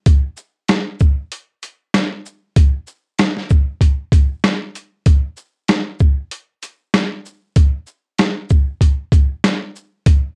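A compressed, pitched-down boom bap drum kit plays from 0.1 to 10.2 seconds in this short cut from a longer hip hop piece, sitting up front with a thumpy kick, medium-tuned snare, hi-hat, rim click and shaker, all colored by cassette tape. The groove moves at 96 BPM in 4/4 with a 59% swing on the sixteenths, giving the beat a tough, gritty feel. Light reverb and the lo-fi character of a home cassette recording add to its rough, sampler-style edge.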